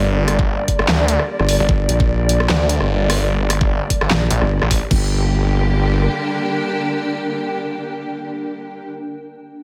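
Light reverb and a digital ambience surround this chaotic, aggressive heavy wobble dubstep excerpt in G minor, running at 149 BPM in a half-time feel with swung 16ths. It opens in the thick of a drop on a G minor chord: a distant, lush bowed string ensemble holds sustained chords with vibrato, pumping against the sidechain and softened by a low-pass filter. Beneath it, a snarling saw bass growls in detuned unison with a moving notch and heavy distortion until about 4.8 s. An overdriven dubstep kit with a huge snare, bright hats, crash, handclaps and rim clicks sits up front beside a knocking electronic kick, both re-recorded in a small room. At 1.4 s a saturated, chorused wobble bass joins in, heavy and compressed, before the drums and basses fall away into a second passage. From 5.7 s a cloudy granular pad drifts in with a slow attack and its own reverb, blurred and evolving as it pumps alongside the strings to the close.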